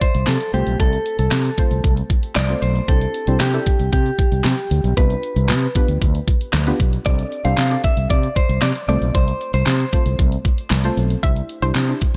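This short, dry excerpt sits close and punchy, with the drums and bass pushed up front. It is upbeat, carefree dance-pop in a straight four, driven by an electronic, layered drum kit of knocking kick, fat snare, warm hi-hat and handclaps, roughened by overdrive and given a small-room character. A round, dark fretless electric bass anchors the low end with sidechain pumping, while a deep, mellow, full-bodied chord stab, detuned and thickened with chorus and a filter sweep, pumps along under the harmony as it moves through D7sus4/C, F, Cadd9 and G7/C. The melody comes from a bright, clean, picked electric guitar, recorded direct and compressed, with spring reverb and tape echo, which drops out at 10.3 seconds. At 11.2 seconds a hollow, nasal, bouncy square-wave pluck with chorus briefly takes over the melody as the chords land on Cadd9.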